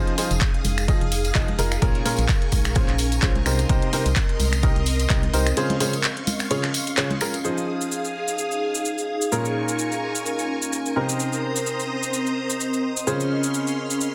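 A woody, slightly detuned upright piano riff with dub echo opens this bittersweet, soulful piano house piece alongside shimmering vintage string-machine violins, an ethereal, airy pad with built-in reverb and a hollow, organ-like FM bass with tube saturation, each pumping to the sidechain, while a layered house kit of finger snaps, handclaps, hi-hat and shaker joins almost at once, a punchy up-front electronic kick drives until 5.2 s, the bass drops out at 5.5 s, and ringing, close tambourine and congas fall away at 7.4 s as the Fm7, Bbm7, Cm7, Dbmaj7 progression repeats under a dense, heavily limited master.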